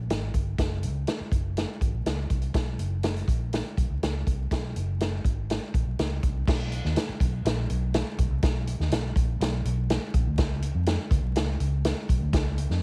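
A straight 4/4 groove at 122 BPM drives this uplifting, danceable excerpt of uptempo 1960s-style soul, with a vintage drum kit of punchy kick, medium-tuned snare, hi-hat and dark crash cymbal sitting up front in a natural studio room from 0.1 seconds onward. Beneath it, a vintage muted fingered electric bass with a round, foam-muted, amped tone holds the low end from F#1 to E#2, moving from one section into a new one at 6.5 seconds. The whole is dry and heavily compressed into a radio-like sound, flecked with vinyl crackle.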